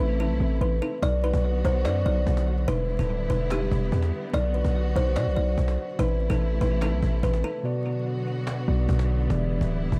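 This half-time trap groove at 145 BPM in 4/4 rides on a punchy, heavy 808-style bass, sine-toned with a noise layer and a fast, decaying attack, sitting up front for the whole cut, while a snappy, vintage cajon with snares enters at 1.0 seconds and sounds band-limited and acoustic. The mood is menacing and brooding, set in B phrygian with chords moving through Bm, Em7 and Am. A woody, hollow-box kalimba carries the melody with a thumbnail pluck and dark, ringing tone through an analog delay until 7.6 seconds, when a brief break arrives. A mellow tine electric piano, clean and heard as if through built-in speakers, colours the opening second and then returns to accompany from 7.6 seconds, also fed through analog delay. Underneath, a lush symphonic string section holds sustained bowed chords with vibrato and expressive portamento. A small room ambience, an echo-heavy mix and vinyl crackle give this fragment of a longer piece its dusty, shadowy atmosphere.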